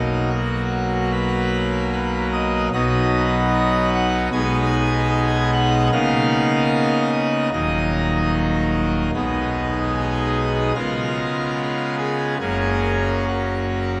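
A long, wet church reverb surrounds this solemn, grave classical chorale, a 14-second fragment of a longer piece at 75 BPM in a straight 4/4. A solo pipe organ on full organ sits up front, its mixtures giving a majestic, brilliant baroque voicing with audible chiff as it spans from a deep D#1 to G#5. The harmony moves from Bmaj7 through G#m/B and C#13 to D#m, then C#7, settling on F# at 12.4 seconds.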